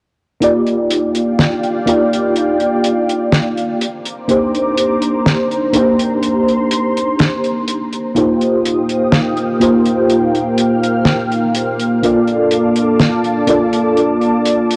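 Soaked in a huge ambient reverb and the warbly pitch drift of worn cassette tape, this woozy, nostalgic vaporwave excerpt moves at 62 BPM in a straight 4/4, with a round, dark FM electric piano carrying ensemble chorus and tape echo up front, a lush, detuned sawtooth pad with chorus and phaser holding bright sustained chords from 1.1 seconds, and a dry, damped 70s drum kit playing hi-hat and a fat snare, as the harmony passes through Ebmaj9, Cm9, F9sus4 and Bbmaj7.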